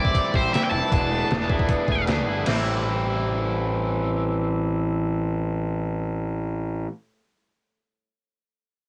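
Indie rock in A minor at 155 BPM, restless and cool, cut from a longer piece and captured as a dry home recording on cassette, moving from Am7 to E7sus4 and back to Am7 after a break at 2.3 seconds. An up-front, bright cranked stack guitar carries a brief overdriven melody until 2.0 seconds while a biting overdriven guitar and a twangy, slightly broken-up guitar through a small old amp with subtle chorus play riffs beneath it. A detuned 8-bit drum machine with a thumpy kick and fat snare plays only until 2.6 seconds, and a punchy fuzz bass enters at 0.3 seconds and drives on to the end.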